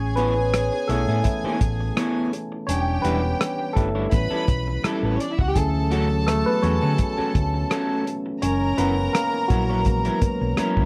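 A dry, close studio sound frames this lush 1970s-style soul excerpt in A major, moving at 84 BPM in 4/4 with a light sixteenth-note swing through chords such as Amaj9, Em7 and Dmaj7. A barky tine electric piano takes the solo from the start, lightly overdriven and phased through a combo amp, over a round, hollow-body fingered bass and a rich chamber string section with light vibrato and an earthy, smooth top. From 0.2 seconds a slightly broken-up, picked electric guitar riff and a soul drum kit join in, the kit playing hi-hat, rim click and a punchy kick with a dark, rolled-off top.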